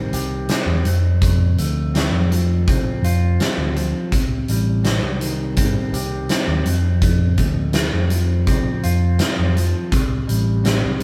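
A huge arena drum kit sits up front, its fat snare, punchy kick and hi-hat giving this brooding, cathartic slice of quiet-loud alternative rock its weight. Beneath it, a picked electric bass adds a dark, round, amped low end. An electric guitar through a small old amp plays arpeggios in a slightly broken-up, compressed tone, sitting lower in the mix than the bass and drums. The harmony moves mostly between C minor and F before settling on a C power chord near 9.9 seconds. A moderate stone room reverb gives the live, one-room performance a natural, roomy feel, and the clip is cut from a longer piece.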